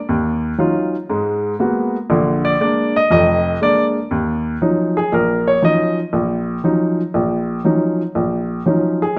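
A warm, woody upright piano opens alone at 0.1 seconds, playing a late-night, swinging jazz passage in Eb minor at 119 BPM. Its present, polished tone sits up front, moving through Ebm9, Abm9 and Bb7 chords across a span from low F1 to Eb5, with the Ebm9 returning at 4.1 seconds as a new section begins. A moderate reverb from a large studio gives the short excerpt, cut from a longer piece, a roomy glow until it ends at 9.2 seconds.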